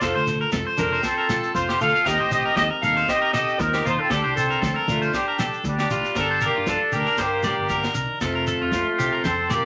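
A wet studio ambience surrounds this highlife guitar band excerpt, and the mood is bittersweet yet danceable. Up front, a tight horn section carries the melody in a vintage jazz style with light vibrato. Beneath it, a bright, twangy electric guitar at the edge of break-up picks out arpeggios, while a picked plugged-in steel-string acoustic guitar adds accompaniment in the background, with finger squeak audible. A fingered electric bass, dark and round, holds the low end. A dry, polished funk kit of kick and snare sets a lightly swung groove, joined by damped, high-tuned congas played with soft hands and a grainy, mellow shekere, and at 6.2 s the music moves into a new section.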